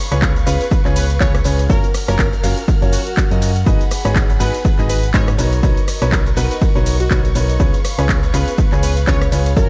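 A punchy, up-front electronic kick drives this soulful, bittersweet piano house excerpt alongside a round, dark FM bass and a house kit of tape-warm hi-hat, handclaps, cabasa, ride cymbal and rim click with studio reverb and tape echo, a very quiet tambourine, a clear yet boxy grand piano riff with tape echo, background violin-section chords full of vibrato and portamento, and a bright, detuned plucky unison lead with lush chorus and tape echo, while sidechain pumping breathes through the strings, piano and bass in an echo-heavy mix.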